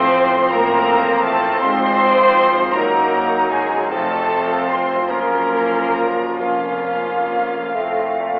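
Heard through a worn, warbling cassette with a thin telephone-like tone and the wet bloom of a scoring stage, this short cut from a longer classical piece moves in a slow, rubato 6/8 at roughly 43-55 BPM, yearning and melancholic. A lush, focused violin section carries the vibrato-laden melody, while an airy, hollow flute, a bright solo clarinet and a softer background violin section trace second lines. A distant bassoon and very quiet violas accompany, clear horns and tight, very quiet trombones hold sustained chords, a ringing harp arpeggiates, and cellos and double basses anchor the bass through chords drifting from F/A through Fm/Ab, Ebm/Gb and Gbmaj7 back to F.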